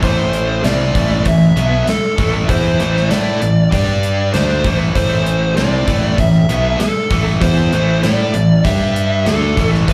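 Hard rock in A minor at 97 BPM, this menacing, driving clip from a longer piece moves in a straight 4/4 and is heard as a live club gig through the venue's PA, with light club reverb around it. A dark, smooth lead guitar sits up front carrying the melody between A4 and E5, its overdrive dressed in plate reverb, slapback echo and analog delay. Beneath it, a bright, cranked stack guitar picks out an overdriven riff, while a second overdriven electric guitar with a warm tone, tremolo and slapback echo plays alongside it further back. A fuzzed, fingered electric bass pushes forward from A1 to A2, while a gated 80s drum kit of hi-hat, tight kick and medium-tuned snare brings an airy, polished snap from its stone-room sound. The harmony rests mostly on Am, dipping to G5 at 3.7 and 8.6 seconds before landing on A5 at 9.3 seconds, with every part playing throughout the roughly ten seconds.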